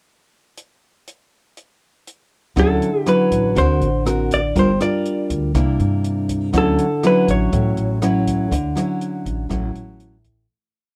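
This sunny, breezy bossa nova in D major opens at 0.6 seconds with a soft drum kit alone for a pickup bar, its hi-hat, rim click and boomy kick sounding natural in a small room. At 2.6 seconds the rest of the band enters together at a relaxed 121 BPM in straight 4/4. A nylon-string guitar, fingerpicked and up front with a full-bodied tone and fresh strings, supplies thumb bass notes and syncopated plucked chords through Dmaj9, D7b13, Gm7 and C9 before returning to Dmaj9. A plucked upright bass with a woody, steel-string sound plays dotted root-and-fifth figures beneath. Above them, a vintage hollow-body electric guitar carries the melody with a dark, clean, compressed, picked tone, building short motifs into sentence-like phrases. The dry, close 1970s-style studio sound holds the group intimate before a fade-out from 8.5 to 10.5 seconds closes the piece.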